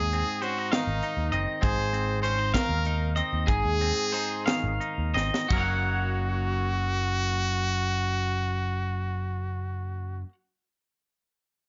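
Lightly reverberant and softened in the top end, this playful, wistful math rock and midwest emo excerpt in a slow 6/8 at 56-66 BPM sets a brilliant, vibrato-laden trumpet melody with slapback echo over twangy guitar arpeggios shimmering in lush chorus, a clean electric guitar's bright picked accompaniment and a growly, up-front picked bass, while the music slows from 1.6 s, a crisp fusion kit with a high-tuned snare and punchy kick plays a fill into the change at 5.5 s and falls silent at 5.7 s, and the harmony moves from Ab7 to Gb6.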